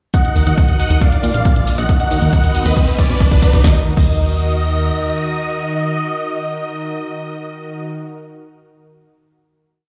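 A huge, euphoric supersaw lead with phaser and sidechain pumping opens this bittersweet, driving uplifting trance piece in Eb harmonic minor at 137 BPM, playing a repeating riff in thirds and sixths over a lush supersaw pad, doubled in unison by a round, warbling analog pluck, and backed by a four-on-the-floor electronic kick and a punchy drum machine of snare, hi-hats, shaker and crash; a galloping sixteenth-note analog bass with tube saturation soon joins, and a background riser and drum fill carry the build to 3.6 seconds before the drums drop out at 4.1 seconds and the piece settles on a final chord, heard in a light stone-room reverb.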